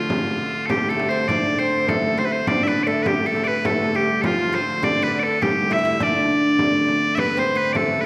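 Medieval dance music with a driving, ancient mood, moving in a straight two-beat metre, cut from a longer piece. Loud, piercing bagpipes carry the melody up front in a continuous solo line. Beneath them a woody, fretless oud plucked with a plectrum on double strings plays a second line, and a rich, smooth hurdy-gurdy hums a drone in the background. A frame drum struck with hard hands adds a vintage, band-limited pulse. From 0.7 seconds a pure, reedy alto flute with vibrato and tongued notes joins with another second line, its lifted highs shimmering through a recital-hall reverb that gives the whole ensemble the glow of a church or concert hall.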